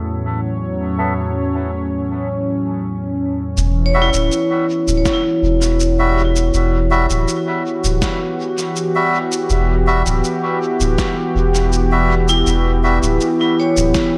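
Deep and meditative, this ambient dub excerpt moves at 81 BPM in E dorian, opening on a smooth, detuned sawtooth pad with chorus while a reedy, breathy melodica drops filtered stabs trailed by dub echo from 1.0 s. At 3.6 s a round, soft sub bass arrives with a muffled, compressed shaker and snare carrying dub echo, joined at 3.9 s by ringing hard-mallet vibraphone arpeggios with delay and slow motor vibrato. An overdriven, layered electronic kick enters at 5.1 s, and the whole dreamy mix is soaked in a lush hall reverb.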